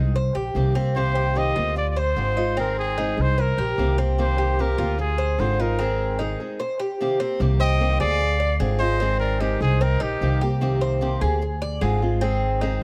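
A close-miked trumpet leads this danceable Latin excerpt in C minor, its punchy, pop-style solo tone carrying a light vibrato up front from 1.0 seconds to 10.4 seconds. Beneath it, a pizzicato upright bass sits up front with a woody, dark sound, while a Cuban tres spins mellow, metallic arpeggios on its doubled strings. A picked steel-string parlour guitar fills in the accompaniment with a boxy, old-strings character. The tune moves at a straight 149 BPM in 4/4, cycling through Cm7, Dm7b5 and Ab, with a break from 5.8 to 7.4 seconds before the second section begins. An airy concert flute enters at 7.6 seconds as a distant, expressive second line in the background, tongued and touched with vibrato, and light reverb gives the whole band a gentle sense of space.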